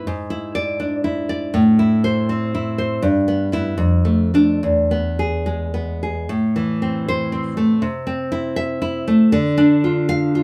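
Passionate and intimate, this brief romantic excerpt for solo classical guitar moves in 2/4 with a free, rubato feel. The nylon-string guitar is fingerpicked and sits up front, its acoustic tone deep and warm, with the occasional finger squeak audible on the strings. It ranges from E2 up to F5, drawing on both low bass notes and higher melodic lines. The harmony opens on E7/G#, settles into Am, and moves through Em/G, Dm/F and E before returning to Am around 6.3 seconds, where a new section begins. That second passage carries on through Am/C to a rootless Bdim/D, and the recording is cut off at 10.4 seconds as part of a longer piece. A wet studio ambience with a short room decay surrounds the instrument, giving it a close, live-in-the-room presence.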